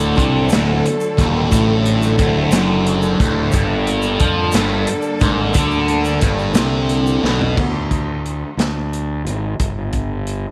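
A double-tracked, bright fuzz guitar riff with phaser opens this mysterious, trippy psychedelic rock fragment in 6/8, over a round, punchy overdriven fingered bass, a reedy, breathing harmonium drone and clear, vibrato-rich bowed strings in the background, with a vintage acoustic kit and grainy egg shaker joining at 0.2 seconds; after a drum fill at 7.2 seconds, only bass and the rolled-off, tight-kicked drums carry on in an echo-chamber ambience until 10.4 seconds.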